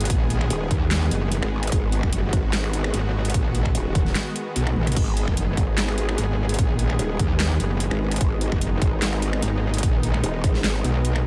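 Heavy wobble dubstep with a menacing half-time swing, as metallic FM wobble bass and a saturated, detuned growl bass with formant filtering sit up front over a lush supersaw pad gritty with vintage 12-bit sampler texture and sidechain pumping, while a punchy electronic kick and a tape-warm kit with a huge snare, metallic hats, snaps, claps and toms drive on until the kick drops out at 4.6 seconds for a brief drum fill in this dry excerpt.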